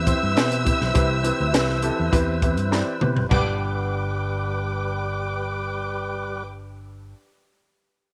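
Uptempo 1960s-style soul with a joyful mood. A punchy, amped fingered electric bass and a worn, woody, slightly detuned upright piano drive it, while a fat tonewheel organ holds sustained chords through a fast rotary speaker and overdrive, with audible key click. A lush bowed violin section carries a smooth second line with vibrato on top. A dry compact cocktail drum kit sits up front, with a high-tuned snare and dark cymbals. A piano fill from 2.1 seconds is joined by a drum fill at 2.7 seconds, and the drums stop at 3.4 seconds, just after the harmony shifts to a major-seventh chord at 3.3 seconds, all in a small room with light reverb.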